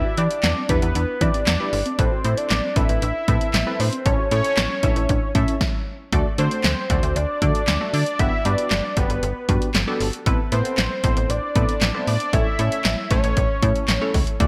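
Nocturnal and melancholic, this synth-pop excerpt sets a fat, detuned analog lead with vibrato up front over a funky sawtooth polysynth comp, a snappy FM bass with a metallic attack, and a punchy analog drum machine of kick, snare, handclaps and hi-hat treated with gated reverb. A soft, round pluck with a dark, chorused tone plays arpeggios in the background until 5.6 seconds, where a brief stop lasts until 6.1 seconds. The bright 1980s-style digital production sits in a lush hall, with chorus and digital delay adding shimmer to the lead.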